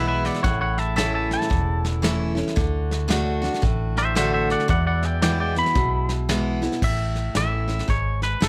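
A swung 4/4 groove carries this easygoing, heartfelt honky-tonk and classic country excerpt, with a soft brush drum kit entering at 0.2 s over a punchy kick. The round, foam-muted electric bass and a bright, full-bodied picked steel-string acoustic guitar hold down the A, D and E changes. Up front, a twangy, compressed electric guitar spins a clean solo line through analog delay, while a tight brass section sustains classical-style chords in the background until 6.8 s, all set in light reverb with close, detailed miking.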